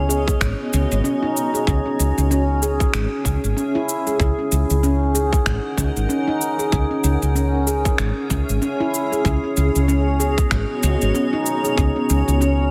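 Hypnotic and meditative, this organic downtempo excerpt moves at 95 BPM in C# minor with a lightly swung 16th-note feel, drifting through chords such as C#m7, D#m7/C# and B/C#. Ringing handpan arpeggios, dark and smooth with digital delay, sit up front beside a round, woody fretless electric bass with lush chorus, while a blurred, evolving granular cloud pad sustains chords with built-in reverb and sidechain pumping. Electronic shaker and finger snaps begin at 0.1 seconds, and an overdriven, tight electronic kick drum follows at 0.3 seconds, all set in light reverb.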